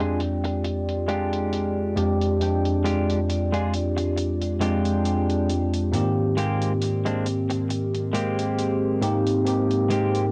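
Vaporwave fragment at a slow 68 BPM in F dorian, woozy and nostalgic, with a light swing on the sixteenths and a harmony that moves from Fm69 to Abmaj9 at 5.9 s. A bright, bell-like tine electric piano sits up front playing the accompaniment through analog chorus and tape echo, beside a clean, hollow-body electric guitar riff, compressed and fingered, roughed up with 12-bit sampler grit and a low-pass filter. Behind them a dark, warbling pad of square and triangle tones holds slow-attack chords in plate reverb, while a muffled, sampler-style electronic hi-hat ticks softly, all of it steeped in cassette tape and a small home-recorded room.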